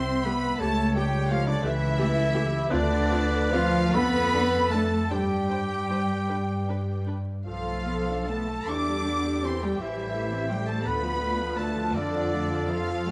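A rich, bowed double bass section sits up front with light vibrato, anchoring this lyrical, slow romantic orchestral movement in 6/8 with rubato. Above it, a violin section carries the melody with lush, smooth vibrato in the background, while a second violin line sings with a soft attack and expressive bowing. Cellos add a portamento-tinged bass line, and violas, entering at 0.2 seconds, fill the middle with an even, enveloping accompaniment. A clear solo clarinet and a very quiet, airy flute ensemble trace second lines. Distant, mellow French horns hold sustained chords, and a roomy trumpet section adds warm stabs. Moderate reverb from a scoring stage and a vinyl crackle frame this brief, warm fragment, which is cut from a longer piece.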